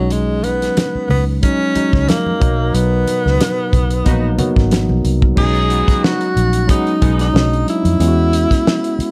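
Lush and smooth, this short cut of 1970s-style soul at 91 BPM in B major, with a gentle swing, features a breathy, scooped tenor saxophone melody up front over a worn, slightly out-of-tune tine electric piano, a dark, round, foam-muted fingered bass, and a tight, dry drum kit with a fat snare and dark cymbals, while very quiet congas play until 5.0 seconds and a warm horn section adds background stabs from 4.1 to 7.3 seconds.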